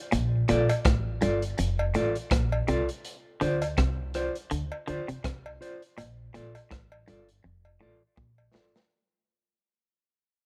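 A rough, dry home-demo sound frames this meditative, laid-back roots reggae fragment, fading throughout as a bright, compressed semi-hollow electric guitar picks a low riff over a woody, thumpy upright bass and a saturated, gritty breakbeat kit with tight kick and rim clicks, while a dark, clean mellow electric guitar adds tremolo and tape echo higher up, a close cowbell joins at 0.7 seconds, and a drum fill arrives at 7.4 seconds.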